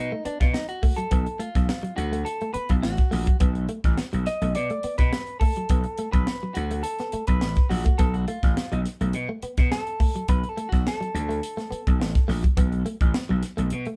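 Funky and energetic, this straight 4/4 funk excerpt cut from a longer piece sets a band playing live in one room with light reverb, where a dry, airy drum kit with a high-tuned snare and tight kick drives alongside a growly, overdriven slap bass that sits up front, while a warm, picked clean electric guitar provides accompaniment until 12.3 seconds over a bright, scooped, direct-recorded guitar riff, all resting on a single B7(no3) chord.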